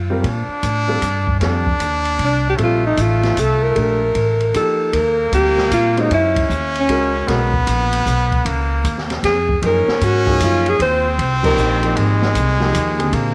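An upright bass sounds from the very first moment, woody and thumpy and up front in pizzicato, as this relaxed small-group swing-and-bop jazz waltz in 3/4 gets under way, cut from a longer piece. A warm, intimate concert grand piano with audible action noise and a deep low end comps beneath, joined almost at once by a punchy, forceful trumpet carrying a second line with light vibrato and scooped notes, and an open drum kit of dark cymbals, a high-tuned snare and a boomy kick, its top rolled off. A clear alto saxophone takes the melody at 2.2 seconds, its vibrato and scooped phrasing touched by tape echo, then returns at 9.3 seconds after a pause. The harmony moves through rich major-seventh, thirteenth, suspended and six-nine chords, and the whole band hits a shared accent at 11.4 seconds. A light reverb surrounds the group, which moves with an easy, swinging lilt.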